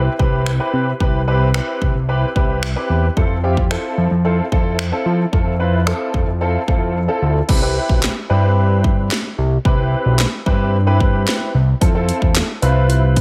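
A straight 4/4 dance-pop groove at 111 BPM in C major, the house drum kit arriving at 0.2 s with a punchy kick, cracking snare, hi-hat, handclaps, finger snaps and crash cymbal, all sounding tape-warm and layered as if re-recorded in a large room. A fat, detuned sawtooth-and-square analog bass with a moving notch and sidechain pumping sits up front beside an intimate concert grand piano, whose audible action noise and long sustain carry the Cmaj7 and Fmaj7 chords through ensemble chorus and the same pumping. The euphoric, carefree passage is cut from a longer piece and drenched in a dreamy plate reverb, with a brief silent gap from 7.0 to 7.5 s before the second section begins.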